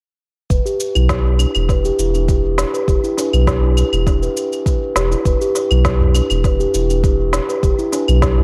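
Mystical and warm, this organic downtempo piece sets ringing, dark steel tongue drum arpeggios, struck with firm rubber mallets and sent through dub echo and a low-pass filter, over a round sine sub bass that pumps from sidechaining under a filter sweep, while a deep electronic kick and an electronic cabasa, claves and snare kit with a woody snare (the latter fed through analog delay), both re-recorded in a large room, hold a straight 4/4 pulse, and a small, very quiet udu joins at 6.0 s, all of it over an Em7 chord in an echo-heavy mix with light reverb and digital ambience.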